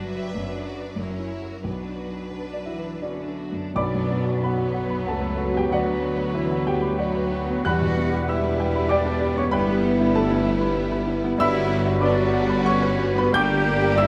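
In a rubato triple metre, this lush, passionate excerpt from a romantic movement for piano and orchestra puts a present, up-front baby grand piano in the lead. Behind it, a rich, expressive violin section with portamento also carries the melody, while a focused second violin section, smooth violas and cellos, and an intense double bass section fill out the strings. Very quiet dark clarinet and an airy flute section join at 2.7 seconds, and at 3.7 seconds a soft-attacked cor anglais, mellow bassoon and tuba, and a distant French horn section playing sustained chords complete the scoring in a moderate, roomy reverb.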